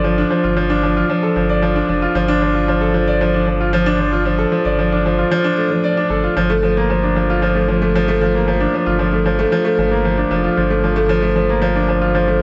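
Piano and strings electronica, melancholic and cinematic, moving at 114 BPM in a straight 4/4 over a brief stretch that shifts from D minor to G minor ninth at 6.4 seconds. A brilliant, woody upright piano sits up front playing a riff with long sustain and tape echo. Beneath it, a round, sine-like sub bass holds deep sustained notes, all set in a dark production with a moderate concert hall reverb.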